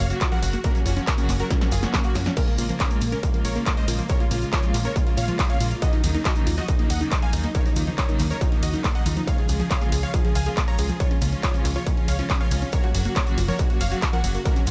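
A digital ambience surrounds this bittersweet, driving uplifting trance excerpt, cut from a longer piece and moving at 139 BPM in a straight 4/4. Up front sits a distorted, layered electronic kick, re-recorded in a large room, while a punchy analog drum machine supplies snare, handclaps, hi-hat, ride and crash, with a short room on the snare, clap and hats and sidechain pumping on the hats and cymbals. A grainy egg shaker ticks in the background, and a very quiet electronic swell sounds between 1.7 and 2.4 seconds, during a drum fill that runs from 1.5 to 2.4 seconds. The bright, airy supersaw stab carries the melody with sidechain pumping and dub echo, shadowed by a dark, mellow concert grand piano playing a very quiet second line. Beneath them, a clear, floating studio string section holds bowed chords with a soft attack, a lush unison pluck spins arpeggios in the background through tape echo, and a funky, detuned analog bass gives a plucky low end, all three pumping with the sidechain. 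The harmony moves from Gb through Bbm7, Ebm7 and Db before returning to Gb at 12.7 seconds.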